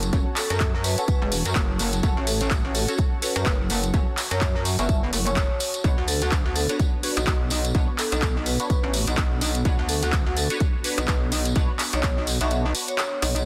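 A bouncy, gritty bass house groove at 126 BPM in 4/4 swings its sixteenths, driven by a punchy, overdriven electronic kick up front and an overdriven house kit of handclaps and hi-hat, with a jingly vintage tambourine tucked behind them; the kick drops out at 12.5 seconds. Underneath, an aggressive, metallic FM wobble bass pumps against the sidechain over F#m moving to Bmadd9 at 5.8 seconds, while a nasal, band-passed sawtooth chord stab with phaser, chorus and delay sits in the background under a filter sweep. A ringing vibraphone melody with delay enters at 0.4 seconds over a soft, breathy detuned pad, all in light digital ambience and a dense, heavily limited modern master.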